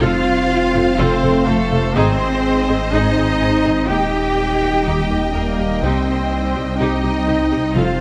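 Tense and futuristic, this 8-second cut from a longer hybrid orchestral and electronic film score moves at 124 BPM in C minor over F, Ab, Eb and Cm chords. A clear studio violin section carries the melody alongside a soft-edged duduk with tape echo, while a symphonic violin section adds a background second line. A rich viola section with portamento accompanies, and a glassy FM pad and a close-miked French horn section sustain the chords. A very quiet, tight sequenced synth drives arpeggios. Underneath, a dark, woody cello section, a swirling, saturated detuned saw bass with phaser and a lush double bass section anchor the low end, all set in a moderate scoring-stage reverb.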